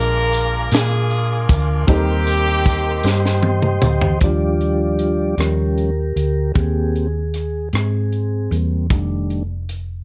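Soulful and uplifting, this short excerpt of slow gospel moves at 51 BPM in a straight 6/8, set in Eb major. An edgy saxophone section with jazz vibrato carries the melody up front until 3.4 seconds, over a woody upright piano heard in the background with audible action noise and a jingly tambourine, both of which drop out at 4.2 seconds. A mellow, flute-like tonewheel organ holds sustained chords through a slow rotary speaker, with audible key click, and from 4.2 seconds it takes a solo as the harmony moves from Ebmaj9 through Eb7 and Abmaj9/Eb to F13. Underneath, a dark, round hollow-body electric bass sits punchy and up front, while a tight funk drum kit with a high-tuned snare, rim clicks and toms plays a fill just before the organ solo. Light studio reverb rounds out the recording.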